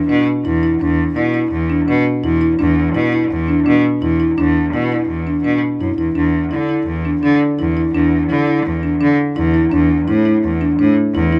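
Set in an uneven five-beat meter with a straight, unswung feel, this short chamber piece, cut from a longer work, moves with a pensive yet restless energy. A marimba played with medium mallets runs arpeggios in a narrow middle register, its padauk bars giving a woody, warm tone. Beneath it, a single bowed cello carries the bass line, bright and biting with an intense vibrato, sitting up front even as it keeps a slightly distant quality. The harmony rests on an open E5, shifts to Dsus2 over E at 6.2 seconds, then settles on D5 over E at 9.7 seconds, so the low E anchors the whole passage. Close, detailed microphones and light reverb capture both instruments, which are tuned to A4 = 435 Hz.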